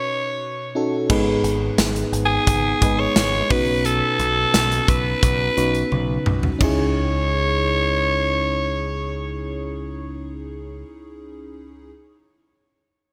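A straight 4/4 pulse at 87 BPM drives this nostalgic, dramatic 1980s-style pop fragment in C# minor, with a modern studio drum kit and picked electric bass entering together at 1.1 seconds. The tight kick and gated-reverb snare sit up front, and the drums close out with a fill before stopping at 6.8 seconds. Over a lush, dreamy FM electric piano with a soft pad layer and chorus, a raspy, gritty alto saxophone carries the solo melody with delay, the bass stays warm and amped underneath, and the chords move from Badd9 through G#m to C#madd9 in a bright digital production bathed in hall reverb.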